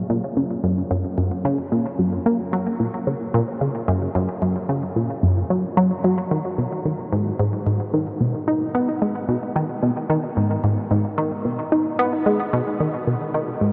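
A tight, driving sequenced synth with a bright sawtooth filter pluck plays alone and up front through chorus and analog delay, evolving across this hypnotic, cosmic ambient excerpt from a longer piece as it hangs in a vast, echoing space of huge reverb.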